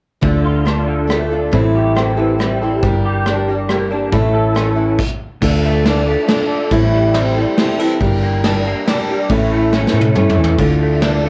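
Folk rock with a heartland rock lean, this wistful, reflective fragment of a longer piece sways gently in 3/4. A bright picked steel-string acoustic guitar carries the accompaniment up front over a Dm, Am7, Gm, A progression, while an electric guitar through a small old amp plays a slightly broken-up, compressed riff with ensemble chorus and a lo-fi edge. Underneath, a hollow-body short-scale electric bass sits dark and round, and a brushed drum kit with a punchy kick and medium-tuned snare sounds roomy. The band halts for a brief stop at 5.0 seconds before the progression begins again, and a drum fill at 9.7 seconds leads back to the opening chord. The acoustic guitar, electric guitar and drums carry a cassette tape coloring, and the whole has a home-recorded, small-room feel with light reverb and a dulled top end.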